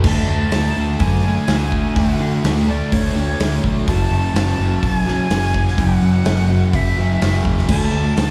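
A straight 4/4 groove from a big rock drum kit with bright cymbals and a boomy kick drives this wistful, blissful shoegaze and dream pop fragment, as a dark, double-tracked fuzz guitar riff and a growling, punchy overdriven fingered bass move from D5 to F#m and back, while a breathy, reedy jazz flute with a crisp chiff carries the melody through diffuse ambient delay in a dreamy mix soaked in lush hall reverb.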